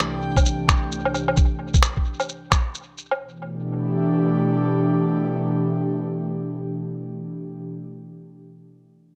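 A swung, muffled groove of pitched-down electronic finger snaps, shaker and woodblock with analog delay, anchored by a thumpy, compressed kick from 0.4 to 2.6 seconds, opens this nocturnal, wistful future garage excerpt before the percussion drops out at 3.2 seconds, leaving an airy, breathy, detuned pad of sustained chords, pumping with sidechain under chorus, to drift alone through an echo-heavy plate-reverb space until 7.6 seconds.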